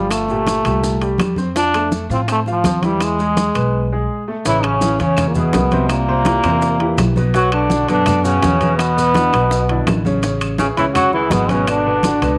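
A buzzy, thin trombone with a metal mute leads up front in this lively, sophisticated slice of Afro-Cuban jazz at 166 BPM in straight 4/4, cut from a longer piece. Beneath it, a smooth vintage grand piano and a growly, woody upright bass played pizzicato carry the harmony, moving through Gm7, Fmaj7 and E before the music settles in A major at 4.5 s on Amaj7. A ringing set of congas and metal-shell timbales sit close and dry in the background, with very quiet low-tuned bongos, while grainy maracas and woody claves sound distant, as if in a large room. After a short break from 3.7 s to 4.5 s, a breathy tenor saxophone with vibrato and a vintage character joins in the background as a second line. The whole band sits in a moderate spring reverb.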